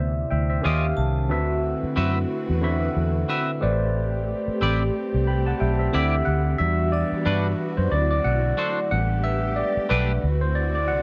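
A close, intimate studio sound frames this romantic soul piece, cut from a longer work, at 91 BPM with a swung sixteenth-note feel, built on rich extended chords that open on Cmaj9. A gritty, barky overdriven tine electric piano with phaser and a dark, round, foam-muted electric bass sit up front from the start. A bright, twangy clean guitar riff with subtle chorus joins them at 0.6 seconds, and a metallic, ringing hard-mallet vibraphone follows at 1.0 seconds, glinting in the background. A lush bowed string section then enters at 1.3 seconds with sustained sul tasto chords and vibrato. At 6.6 seconds the electric piano takes a solo over the second section.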